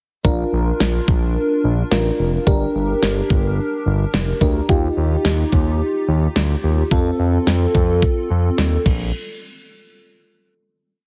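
A straight drum-machine beat from an electronic pop kit, with knocking kick, fat snare and crash cymbal, drives this upbeat, nostalgic synth-pop piece, while a smooth, sawtooth-edged synth bass pulses in eighth notes beneath it. Up front, an FM electric piano with a soft pad layer holds lush, dreamy, detuned chords, shimmering with chorus and phaser, through a Bb, Gm, Ebadd9 and F progression until 8.8 seconds. Light reverb and a heavily compressed, radio-like sound frame the short verse before it closes on a final hit from 9.1 seconds.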